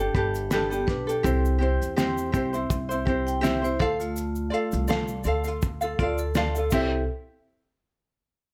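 A sunny, carefree acoustic pop excerpt in C major at 82 BPM with a light 16th-note swing opens on a fingerpicked, up-front ukulele and a woody, thumpy pizzicato upright bass, moving from Gadd9 through C to Dm. A cloth-damped drum kit with a fat snare, tight kick, dark crash cymbal and shaker adds a muffled, lo-fi, gritty thud from 0.1 s, while a grainy tube shaker sits in the background. At 0.7 s a dry, close-miked vibraphone, struck with medium hard mallets and its motor off, enters with a ringing, metallic second line, and the mix sits in light reverb.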